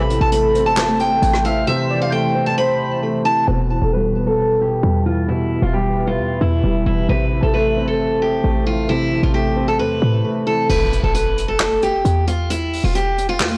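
Hip hop trap at 133 BPM in a half-time feel and E phrygian, hard-hitting yet melancholic, where an up-front picked steel-string acoustic guitar with finger squeak carries the melody over a punchy, tight 808-style bass, a boxy, mellow concert grand piano and a deep, moody sawtooth pad in the background, while a velvety synth lead with chorus and delay adds a second line until 3.0 s, a distant, roomy brush drum kit with handclaps and rim clicks plays briefly at the start and returns at 10.7 s alongside an electronic impact, and the recording as a whole sounds blown-out and overdriven in a small room.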